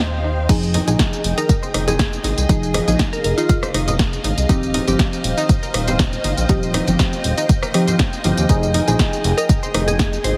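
This hypnotic, deep deep house excerpt in F minor at 120 BPM opens with silky string-machine chords, dark chorused and phased chord stabs with tape echo, a smooth evolving synth bass, a clear chamber violin section in the background and a very quiet studio string section heard only in the first 0.5 seconds. A round analog pluck arpeggio with digital delay enters at 0.2 seconds. A punchy, tape-warm electronic kick and a punchy analog drum machine with snare, hi-hat, rim click, tambourine and crash arrive at 0.5 seconds, and distant ringing congas and bongos follow at 0.7 seconds. A glassy wavetable pluck melody appears at 1.4 seconds and returns near the end, all over Fm7 and Eb69 chords with sidechain pumping on most parts and a heavily compressed radio sound.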